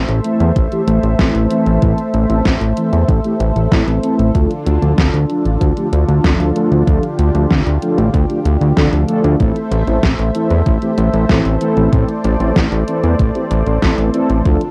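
Synthwave with a cinematic, nocturnal mood, built on a fat, saturated sawtooth bass up front beneath brassy detuned pad chords that pump with sidechain and chorus, mellow synth brass stabs trailed by tape echo, a knocking overdriven electronic kick and a pop kit with a deep snare and hi-hat, all moving from Am to Dm and back in a small booth with a home cassette grain, cut from a longer piece.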